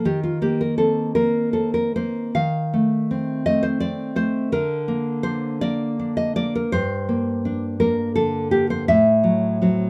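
In a rubato 6/8 lilt at about 55 dotted-quarter beats per minute, this intimate, melancholic romantic excerpt for solo nylon-string classical guitar sits up front with a dark, full-bodied fingerpicked tone in light reverb, opening on an Eb5 chord in Bb major and moving through F7/Eb and Bb/D before turning to G minor at 6.7 s and closing on F#dim/A at 8.9 s.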